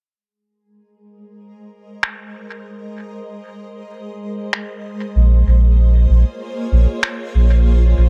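A dry, close-sounding cut from a longer ambient dub piece, meditative and hazy at 96 BPM with a light swing, opens with a cloudy, blurred granular pad fading in from 1.2 seconds on an Abadd9 chord, bathed in its own reverb; muffled, pitched-down sampler-style finger snaps arrive up front at 2.0 seconds, compressed and thrown into dub echo with a low-pass filter on the snare; and a deep, round sub bass lands at 5.2 seconds as the harmony shifts to Bbm7.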